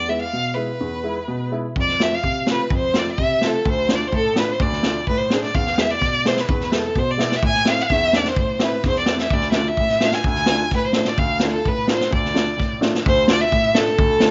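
Festive yet bittersweet, this klezmer fragment in 2/4, cut from a longer piece, puts an intense, bright bowed violin with vibrato up front over a warm, woody upright piano, while a vintage drum kit with a punchy kick, a medium-tuned snare and a rolled-off top joins at 1.8 s, all set in a small room with light reverb.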